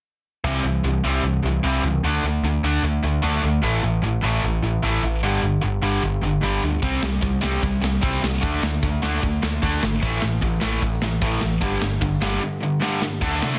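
A dark overdriven electric guitar, a bright up-front distorted guitar and a growly, punchy picked bass open this energetic, rowdy punk rock excerpt at 0.4 s, hammering a riff over a C, D5, A5, G5 cycle until a gritty, big-room metal drum kit crashes in at 6.8 s and rolls through a fill at 12.8 s, and as the fill ends a double-tracked distorted guitar slips in behind the mix at 13.2 s under light reverb in a dense, heavily limited modern master.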